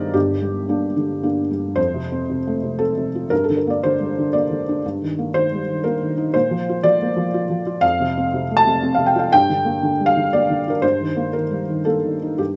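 A felt-muted upright piano sits up front in a light reverb, its tone soft, dark and intimate with the thick felt dulling every note. This is a short cut from a longer neoclassical minimalist piano piece in G minor, moving in 3/4 at around 119 BPM but played with a rubato, breathing feel. The mood is melancholic and reflective, with the solo piano covering a range from G1 up to A5 and tuned slightly above standard pitch, to A4 = 441 Hz. A brief opening on G minor gives way at 1.8 seconds to a longer passage that circles through F, G minor, E-flat over G, B-flat and F before returning to G minor and E-flat over G. The piano plays alone for the full 12.6 seconds, its mellow, hushed character keeping the harmony close and private.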